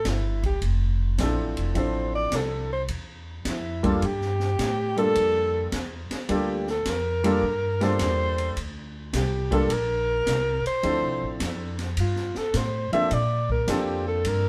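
Swung eighths in 4/4 carry this moody, cool bop-flavoured jazz excerpt, where a breathy, mellow alto saxophone solos up front with vibrato and a soft subtone over woody, growly pizzicato upright bass, an acoustic kit with dark cymbals, a high-tuned snare and a boomy kick, and a warm baby grand piano that joins at 1.2 seconds, the band playing live together in one room with light reverb.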